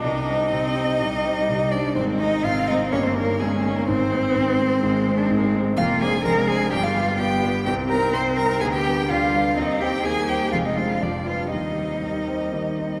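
Heard in a wet concert-hall reverb, this quick, graceful and spirited classical-period piano quartet movement in C minor runs at 126 BPM in 4/4 with a rubato feel. A close, expressive bowed violin with soft attack, vibrato and portamento carries the melody, while a clear, focused cello sits up front on the second line and a warm viola with a smooth top adds accompaniment. An intimate, vintage-sounding concert grand with deep bass and audible action noise fills out harmonies that move from Cm through Ab, Dm7b5/F and G7 before settling on Cm/Eb at 11.5 seconds.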